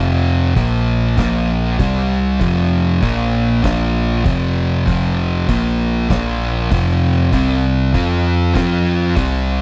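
Stoner and doom metal at 98 BPM in 4/4 with a swung eighth-note feel, this ominous, heavy cut from a longer piece churns through power chords on F, Bb and C. Two thick fuzz guitars drive the riff from the first second, one warm and up front, the other darker and set back in the background, over an overdriven picked bass that is round and punchy. The oversized, low-tuned drum kit enters at 0.6 seconds with a fat snare, punchy kick and hi-hat, sounding saturated and gritty with a rolled-off top, all captured in a dry, close 1970s-style studio recording.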